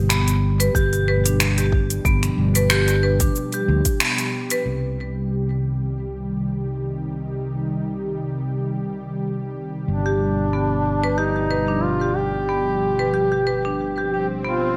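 At 92 BPM in 4/4 with a light swing on the sixteenths, this organic downtempo excerpt from a longer piece opens with an electronic drum kit of cabasa, finger snaps and metallic hi-hats, overdriven and up front, joined at 0.7 s by a deep, overdriven electronic kick. Both drum parts drop out around a band accent at 4.0 s, the kick at 4.0 s and the kit by 4.6 s, leaving a mystical, hypnotic bed in C harmonic minor that moves from G7 to Cm and back to G7. Underneath throughout, a smooth, detuned sawtooth pad holds dark sustained chords with chorus and sidechain pumping, while a growly, amped fretless electric bass also pumps beneath it. A bright marimba struck with hard mallets plays percussive arpeggios through a digital delay, pausing mid-piece and returning at 10.1 s. At 9.9 s a mellow duduk takes the solo melody up front, folk in style with vibrato and scooped notes, its soft attack trailed by digital delay, before an electronic swell closes the final moments from 14.1 s. 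The sound is bright 1980s-style digital production set in a moderate plate reverb.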